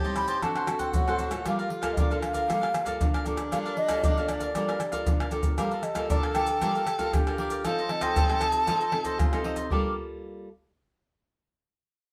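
A baroque flute carries the melody from 0.2 seconds, its wooden, airy tone shaped by vibrato, crisp attacks and an expressive, close-miked presence. This is a yearning, bittersweet blend of samba and choro in G minor at 116 BPM, cut from a longer piece, with a straight 4/4 feel. Beneath the flute, a breathy tenor saxophone plays a second line in a whispered, intimate jazz style, with scooped notes and a soft attack. A bright, picked cavaquinho and a full-bodied, fingerpicked classical nylon-string guitar, its fresh strings showing an occasional finger squeak, supply the accompaniment over harmony that moves through D7, Gm9 and F7. The percussion of maracas, pandeiro, tamborim and a tight surdo sits prominently in a live room sound with hard hands, and a drum fill from 5.2 to 5.6 seconds leads into the next section. Moderate studio reverb gives the ensemble a sense of space.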